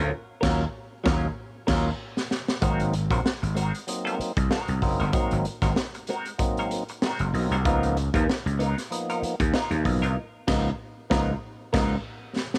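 A growly, overdriven slap bass sits up front in this driving, sly funk excerpt at 96 BPM, with a 16th-note swing feel and chords moving from Ebm9 to Ab9 and then Db13. A twangy, compressed clean guitar through wah and a percussive tonewheel organ with key click and slow rotary speaker fill out the harmony, while a raw garage drum kit with a punchy kick, high-tuned snare and saturated, rolled-off top enters at 0.4 seconds. The band hits accents at the opening and again from 10.2 seconds, each marked by a drum fill, all in a dry, close-sounding room.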